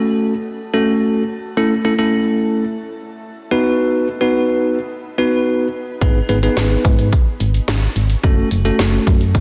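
Cool and melancholic, this synth-pop excerpt opens with a bright, bell-like tine electric piano playing a clean accompaniment alone, bathed in shimmer reverb and a wet concert hall ambience. At 6.0 seconds a round, dark FM bass and a house drum kit with a punchy kick and cracking snare join up front. The whole is pressed into a dense, heavily limited modern master as the harmony moves from F#m through A and B to G#m and back.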